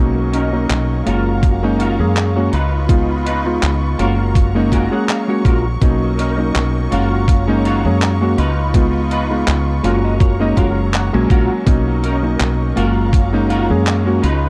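Dark, cassette-toned production with light reverb gives this woozy, nostalgic vaporwave cut, taken from a longer piece, a warm feel at 82 BPM in 4/4 with a gentle swing on the sixteenths, in F# major. A vintage electric grand piano sits up front with a clangy low end and short sustain, its chords carrying subtle chorus, 12-bit sampler grit and tape echo, while a lush, close-miked string section holds bowed chords with vibrato underneath. A woody fretless bass, round and dark with analog chorus, anchors the low end, and a thumpy, sampler-style electronic kick enters at 1.4 seconds. A detuned 8-bit drum machine adds handclaps and hi-hat in studio reverb. A bright, picked semi-hollow guitar plays a clean riff softened by ensemble chorus, a low-pass filter and tape echo, stepping out with fills at 4.4 and 9.5 seconds. The harmony circles through Bmaj9, F#maj7 and C#9 throughout this single section.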